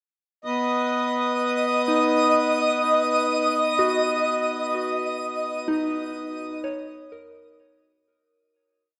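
A twinkling granular texture sits up front, sustaining a sparkling high note with an octave-up shimmer that blooms slowly and rings long through its own built-in reverb. This whole ambient piece is luminous and serene, moving at an unhurried 63 BPM in 4/4 on a B major chord. Beneath it, a hand-pumped harmonium breathes a reedy, mellow drone from 0.4 seconds, close and mid-forward, gradually fading as the piece goes on. A soft FM synth bell arrives at 1.9 seconds and fades in, its pure, gentle arpeggios striking quickly and decaying into a long release, coloured by chorus, phaser and dub echo, with two slow loops of unequal length drifting against each other. The mix is echo-heavy, set in a wet echo chamber with a cassette tape character, and the whole piece fades out from 4.3 seconds.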